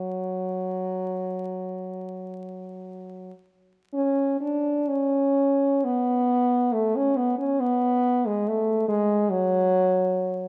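A mellow French horn plays alone with a soft attack in this brief classical fragment in F# minor, its lonely, yearning line ranging from F#3 to D4 in free rubato between 42 and 75 BPM in 4/4, sitting up front yet roomy within a moderate recital hall reverb, while the dark production adds vinyl crackle and the opening idea returns at 3.9 seconds.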